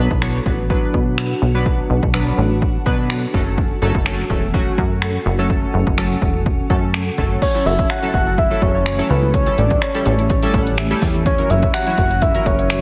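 A straight 4/4 groove at 125 BPM drives this confident, energetic dance-pop passage, where punchy overdriven deep house drums with kick, hi-hat, finger snaps and crash cymbal sit up front beside a funky plucky analog bass, while glossy chorused retro synth keys and a blurred granular cloud pad pump under sidechain through a dreamy, reverb-soaked hall over chords moving from Bm to F#m, until a round, dark octave-layered synth lead with chorus and analog delay and a very quiet unison pluck playing arpeggios enter at 7.4 seconds, the keys add a fill, and a jingly, dry tambourine joins at 11.7 seconds.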